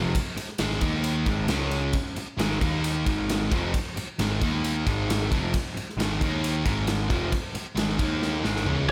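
Two overdriven electric guitars, one crunchy and one sludgy, open this heavy, driving hard rock excerpt alongside a fuzz-laden picked bass, playing a riff over Ab5, Eb5 and Db5 chords at 134 BPM in straight 4/4, with slapback echo on both guitars. A gated 80s acoustic drum kit joins at 0.1 s, sitting up front with a punchy kick, a medium-tuned snare, toms, ride and bright cymbals in a stone room, and it closes with a fill from 8.2 s. A lush hall reverb lends the whole riff a roomy glow.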